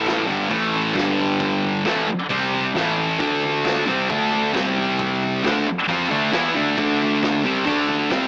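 Garage rock with a swaggering, gritty mood at 134 BPM, this short cut from a longer piece puts a thick, bright, double-tracked fuzz guitar riff up front over power chords moving among A5, G5, C5 and D5, with a very quiet, round, overdriven picked bass underneath and a vintage drum kit of punchy kick, medium-tuned snare and toms sitting in the background with a rolled-off top, all heard through light small-room reverb and the small-speaker sound of a home cassette recording.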